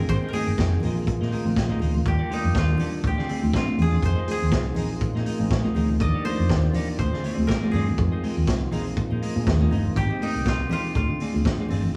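A live band sound in a moderate stone room opens this driving, sultry disco excerpt at 122 BPM with a light 16th-note swing, where a bright, woody koto played with fingerpicks carries the melody over a worn, barky tine electric piano through a lightly overdriven combo amp, a clean picked electric guitar, a fat tonewheel organ with third-harmonic percussion and slow rotary speaker, a round, amped fingered bass, a punchy, up-front vintage drum kit with rolled-off top, and thin-skinned, high-tuned congas in the background, over changes through Abmaj7, Ebmaj7, Dm7b5, Fm7 and Bb7sus4.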